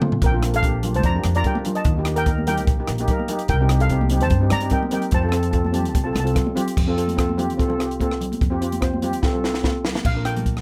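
Festive and bouncy, this short calypso excerpt moves in a straight 4/4 with two steel pans at its heart, both double seconds played with medium rubber sticks. One pan carries the melody from 0.2 to 6.3 seconds, airy and up front, then returns briefly at 10.1 seconds, while the other holds down the accompaniment throughout with a close, dry and full sound. Beneath them, a pizzicato upright bass with steel strings gives a woody, warm foundation as the harmony moves from Bb through Eb and Cm7 to F before landing back on Bb. A compact cocktail drum kit sits forward in the mix, polished and punchy, with a high-tuned snare, rim clicks, hi-hat, toms and crash cymbal, opening with a fill and adding another from 9.2 to 10.1 seconds. Bright, high-tuned congas with a thin-skinned, vintage, band-limited character sit in the background. Close, detailed microphones and light reverb capture the whole band.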